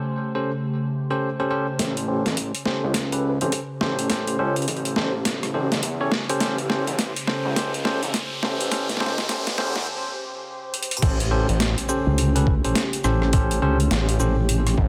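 A dense, heavily limited modern mix with light digital ambience frames this playful, funky glitch hop cut from a longer piece, moving at 104 BPM in 4/4 with a 62% swing on the sixteenths. It opens on a warbling, nostalgic, lo-fi pad sustaining an A7#9 chord, thickened by chorus, phaser and its own reverb and pumping against the sidechain, while a bell-like, barky tine electric piano sits up front with stabs through a digital delay and low-pass filter. At 1.8 seconds a build-up begins: a gritty, aggressive sawtooth synth bass with tube saturation arrives with an overdriven, pitched-down sampler-style kit featuring a high-tuned snare, rim click, shaker, hi-hat and crash in a small room, plus a thumpy electronic kick set further back. Filter sweeps move over the pad and electric piano, drum fills run through the build, and a faint riser in the background leads into a short break. The drop lands at 11.0 seconds with a background impact, and at 12.1 seconds a nasal, dark vowel-sweep wobble bass with chorus pushes forward as the loudest part of the mix.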